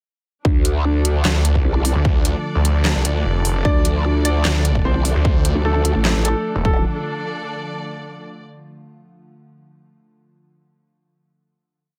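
An overdriven, punchy electronic kick opens this menacing, heavy wobble dubstep piece at 0.4 s. It drops almost at once into a half-time 4/4 groove at 150 BPM in D minor. A layered dubstep kit joins with a deep snare, handclaps and metallic hi-hats that sound re-recorded in a small room. Two up-front basses dominate the drop. A saturated, growling sine bass with chorus plays modulated phrases whose wobble speed changes, and a snarling, detuned sawtooth bass, distorted and resonant with a moving notch, answers it with chopped phrases. Beneath them, an evolving, morphing wavetable pad holds bright sustained chords with chorus, reverb and sidechain pumping, while a woody, bowed string ensemble sits distant in the mix with vibrato and slowly shifting chords. At 3.6 s a clear, present baby grand piano enters with a repeating riff in octaves through a digital delay; the mix is otherwise dry and loud, and the dark strings carry the final D note alone until 8.4 s.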